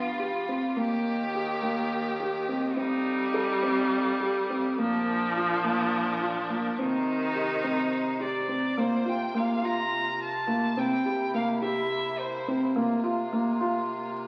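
A felt-muted upright piano opens up front with soft, dark arpeggios and audible action noise, alongside a clear, focused violin melody with vibrato and a nasal, bowed viola second line, over earthy sustained chords from a chamber string section and a mellow bass clarinet bass in the background. This urgent, pensive contemporary chamber piece moves in an uneven 7/8, its harmony drifting through seventh chords before settling on suspended colours. The viola drops out at 8.5 seconds and the violin at 12.6 seconds, and the whole fragment, cut from a longer piece, sits in a reverberant recital hall with the crackle of a very old 78 rpm record.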